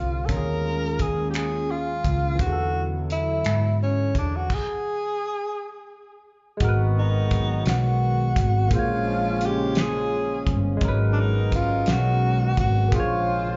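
Heard live through a club PA with a muffled, rolled-off top and a hint of room ambience, this late-night, sultry slow six-eight R&B excerpt sets a breathy, whispered tenor saxophone with scooped notes and slapback echo over a barky, lightly overdriven tine electric piano with phaser, a hollow, flute-like background pad, a woody, growly fretless bass and a cloth-damped, thuddy drum kit with finger snaps, breaking into a stop at 4.5 seconds before a smooth-topped horn section adds background stabs from 6.6 seconds.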